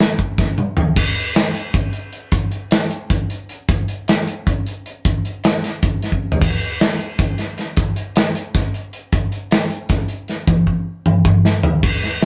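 A rough rehearsal-room recording with light reverb frames a solo acoustic drum kit, its small-room sound airy yet polished, with bright cymbals, a medium-tuned snare and a punchy kick sitting up front. This short rock passage, cut from a longer piece, moves in a straight 7/8 feel across crash, hi-hat, kick, snare and toms, carrying a wistful, intricate mood. Fills mark the opening at 0.4 seconds, break in again at 6.1 seconds, and return from 10.5 seconds to close the passage.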